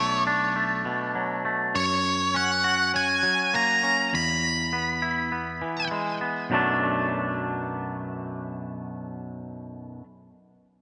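A dark, fuzz-soaked octave-fuzz lead guitar carries the melody up front with distortion and digital delay, dropping out at 5.9 seconds. Alongside it, a bright, twangy electric guitar picks clean arpeggios through slapback echo and digital delay until 10.0 seconds, tracing Bm7, F#add9 and E before returning to Bm7 at 6.5 seconds. This cinematic, melancholic rock passage in B dorian moves at 101 BPM in a straight 4/4, set in a lush hall reverb that gives it a big arena sound.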